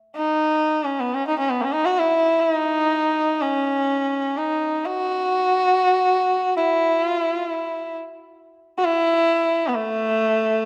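A single bowed sarangi, up front with a nasal, earthy tone and a smooth top, carries this devotional, radiant Indian classical excerpt in free time from 0.2 to 10.7 seconds, gliding with portamento and light vibrato between A3 and F#4 as its sympathetic strings ring into a moderate concert-hall reverb.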